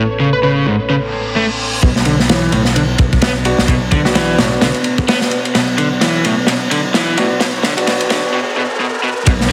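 Heavily compressed and radio-thin in a lush hall, this swaggering, gritty breakbeat cut in B minor at 129 BPM opens on a deep, moody pad, a growly picked electric bass, a filter-swept overdriven semi-hollow guitar riff and a brief plucky lead blip. A very quiet reverse cymbal then leads into crunchy, saturated breakbeat drums at 1.8 seconds as a quiet riser builds. Brilliant grand piano stabs sit in the background from 3.5 seconds, and a drum fill builds toward a closing swell.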